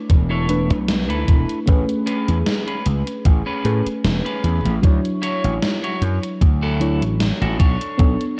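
Heard through a faded cassette-tape haze with digital ambience, this dreamy vaporwave excerpt drifts over E7sus4, Amaj9, Dmaj9 and Bm9 chords, with a soft, warbling FM electric piano bathed in lush chorus and tape echo, a punchy, overdriven slap bass and a thumpy electronic kick sitting up front, a gated 80s drum machine adding hi-hat and a gated-reverb snare in a large room, and a twangy, slightly broken-up electric guitar riff softened by subtle chorus, a low-pass filter and tape echo.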